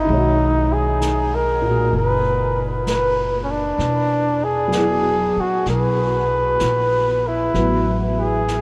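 A flugelhorn sits up front and carries the melody with a soft attack, vibrato and scooped notes, its warm tone trailed by a delay. Beneath it, a dark, vintage baby grand piano plays an intimate accompaniment, thickened by an ensemble chorus, with its action noise audible. An upright bass is plucked with a woody, steel-string sound in the low register. A brushed jazz kit, distant and roomy, comes in at 0.1 seconds on snare and hi-hat, keeping a swung eighth-note feel. This melancholic, smoky fragment of slow jazz moves through Bmaj7, Eadd9 and Asus2, and the whole mix is soaked in a huge, dreamy reverb.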